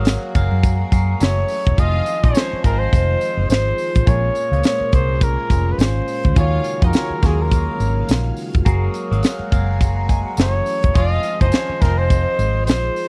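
A barky tine electric piano, bright and clean through a combo amp with a phaser, opens this silky, smooth stretch of lush 1970s-style soul. It is joined at once by a shimmering string machine of violins that holds soft-attack sustained chords in the background, and by a dark, round, foam-muted electric bass up front. A tight funk drum kit, with a high-tuned snare, snug kick and hi-hat, sits forward in a small room alongside a jingly tambourine tucked behind, setting a swung sixteenth-note feel. At 1.2 seconds a clear, punchy flugelhorn takes the solo melody with vibrato, and at 1.8 seconds a distant bowed string section adds a focused second line. The harmony glides through rich chords such as Gbmaj9, Bbm9 and Ebm11, all captured in a dry, close studio sound that is cut from a longer piece.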